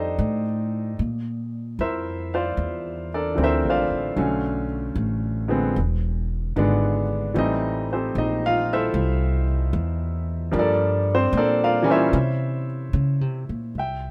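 Tender and romantic, this jazz ballad excerpt swings gently in 4/4 as a clear, up-front baby grand piano with short sustain comps through rich chords like Bbmaj9#11 and C7b9, while a woody pizzicato upright bass sits close beneath it in a light reverb for the full 14.1 seconds.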